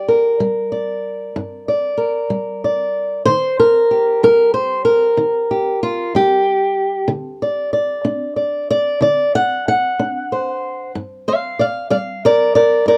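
Acoustic country blues in a slow, straight 12/8, this brooding, mournful excerpt is cut from a longer piece and runs just 13.0 seconds. A single fingerpicked old ladder-braced acoustic guitar carries everything, sitting up front with a dark, boxy tone. The playing spans a broad compass from deep bass notes to high treble lines, giving the lone instrument a full, self-contained voice. The harmony moves from G minor to E-flat, then leans on a D7 before settling back home to G minor. Light reverb and a dusky, warm production wrap the guitar in a close, intimate atmosphere that suits its sorrowful character.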